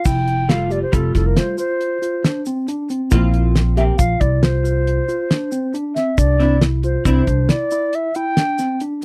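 A wooden baroque flute with vibrato carries the melody up front from the start of this bright, intricate progressive instrumental in 7/4 at 137 BPM in F major, over a worn, slightly out-of-tune tine electric piano playing lightly overdriven arpeggios and a grainy tube shaker in the background. A woody, thumpy pizzicato upright bass and a damped 70s drum kit with a fat snare, tight kick and dark cymbals join at 0.1 seconds, and a clean, picked hollow-body jazz guitar, double-tracked and compressed, adds accompaniment from 0.5 seconds through the Fmaj7, Bbsus2 and Cadd9 changes. The close, dry 1970s-style studio sound carries light reverb, and this short cut from a longer piece runs about 9 seconds.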